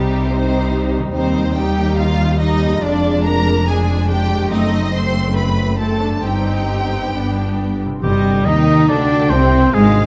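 A distant, expressive first violin section sings the melody of this dramatic, restless romantic orchestral movement, played with rubato. Lush second violins and smooth violas fill the middle, a ringing harp plays very quiet arpeggios, and focused cellos sit in the background while rich double basses anchor the low end, all within a moderate recital-hall reverb. At 8.0 seconds a mellow, tight French horn section holds sustained chords, a warm solo oboe adds a second line, and soft timpani sound until 8.6 seconds, before the fragment is cut off.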